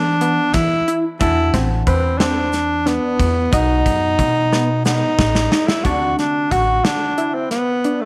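Bathed in a moderate spring reverb, this tense, driving progressive excerpt in 7/8 sets a classical-style tenor saxophone melody up front over a dark, clean hollow-body jazz guitar and a detuned sawtooth synth arpeggio treated with chorus and phaser, while a growly pizzicato upright bass and a gated 80s kit with a tight kick drive on toward a drum fill at 4.5 s, and a grainy tube shaker sits barely audible from 1.2 to 5.2 s.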